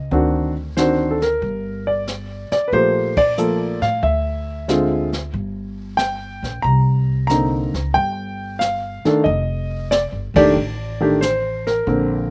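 A 4/4 swing at 92 BPM opens this brief cut from a longer jazz piano trio piece, warm and sophisticated in mood as it moves through a minor-leaning progression from D7b9 and Gm9 toward Cm9 and F13. The concert grand carries the melody with an intimate, up-front tone, deep bass and short sustain, its action noise audible. The pizzicato upright bass sounds woody and thumpy on gut strings, and the brushed kit adds dark cymbals, a high-tuned snare and a boomy kick, with the whole trio hitting accents together at 3.1 and 10.2 seconds in a dry, close sound.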